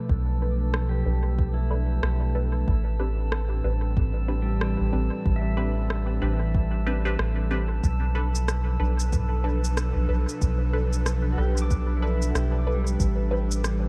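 A round, soft sub bass sits up front in this deep, hazy ambient dub excerpt at 93 BPM in 4/4 with a 16th-note swing, moving between Bm7b5 and Am11 beneath a breathy, detuned pad with chorus and a glassy, drifting texture of bright overtones. A soft electronic kick plays alongside an organic-sounding electronic kit of cabasa, rim click and toms, the kit carrying dub echo, while muted, filtered chord stabs pass through phaser and echo. A clean, twangy pedal steel guitar with slide and tape echo plays arpeggios from 0.9 seconds, drops out at 7.2 seconds and returns at 11.3 seconds, all within a dark, dry production.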